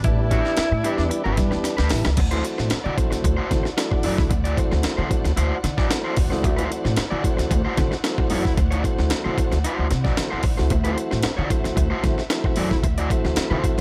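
An up-front, compressed breakbeat drum kit with a thumpy kick and high-tuned snare drives this strutting, gritty funk at 112 BPM in D mixolydian, as a breathy, subtoned tenor saxophone with slapback echo sings a brief scooped phrase that ends at 1.6 s, a crunchy overdriven guitar joins almost at once, a drum fill leads into the move from A9sus4 to D9 at 2.2 s, and a woody, gut-string pizzicato upright bass, clean key-clicking tonewheel organ stabs through a stopped rotary speaker and a lush, dark bowed string section in the background fill out the studio ambience.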